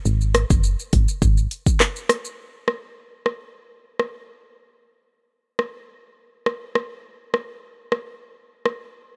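A dry, rough home-demo mix opens this short cut from a longer dancehall piece, with a hypnotic, tough mood in straight 4/4. A punchy, round FM bass with a fast attack and decaying dark tone sits up front, but only from 0.1 to 1.5 seconds. Alongside it from 0.1 seconds, a layered electronic deep house kit enters and then carries on alone until 8.8 seconds, with a deep kick, shadowy hi-hats, handclaps, rim clicks and shaker pushed forward in the mix, and the arrangement shifts into a new section at 2.4 seconds.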